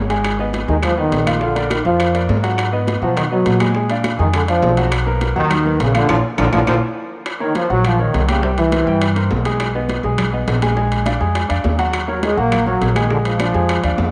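Salsa at a driving, danceable 205 BPM in Eb minor, where a mellow, up-front trombone section carries the melody with light vibrato over a polished grand piano's accompaniment and a dark, thumpy pizzicato upright bass, while ringing, distant timbales, soft-handed high-tuned congas, very quiet round bongos and dry woody claves fill out the percussion, all set in moderate plate reverb, with a band accent from 6.1 to 7.3 seconds and a drum fill from 6.5 seconds leading into a second section that opens on Ebm7 and C7.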